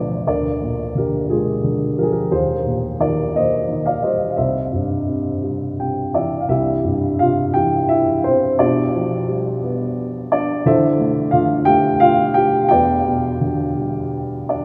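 Classical solo piano in a lyrical, dark and wistful mood, moving in a slow, rubato 6/8 at about 58 dotted-quarter beats per minute and tuned slightly high to A4 = 441 Hz. A dark baby grand carries the whole passage from C2 to G5, its mellow, boxy tone and short sustain sitting up front within a cathedral reverb that lingers for 5.2 seconds. Harmonies drift through Bb7/D, Eb6 and C before a piano fill at 5.4 seconds leads into a second section at 6.5 seconds over G7/B, Dm7 and Em7, and the fragment is clipped from a longer piece.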